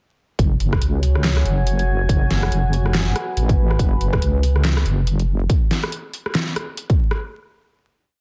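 Deep dubstep in F# minor at 141 BPM with a half-time, swung feel, this short, whole piece is cavernous and meditative, sitting in a drop from 0.4 seconds on an F#sus2 chord. A punchy, up-front electronic kick and a layered dubstep kit of deep snare, rim clicks, handclaps and hi-hats, both re-recorded in a large room, carry the half-time beat, while a deep, soft, chorused wobble bass of detuned sawtooth and sine rolls out modulated phrases with changing wobble speed. From 0.9 seconds a dark, moody analog pad with a sub octave, slow attack, chorus and phaser holds sustained chords beneath a dense, heavily limited master with light reverb and vinyl crackle, and the drum kit plays on until 7.2 seconds.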